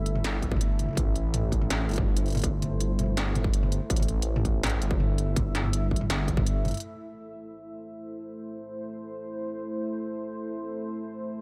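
A half-time drum and bass groove at 164 BPM in A minor rolls out of a heavy, dark excerpt, with an electronic kick carrying distortion until about 6.4 seconds and an industrial kit of clanging snare, crisp hats and toms playing until about 6.8 seconds, both re-recorded in a small room. Beneath them a rumbling, saturated detuned saw bass sits up front on an Am chord until 6.7 seconds, while a deep, moody ambient pad holds sustained chords with chorus, built-in reverb and sidechain pumping. The pad then carries on alone to 11.4 seconds, all under a light reverb.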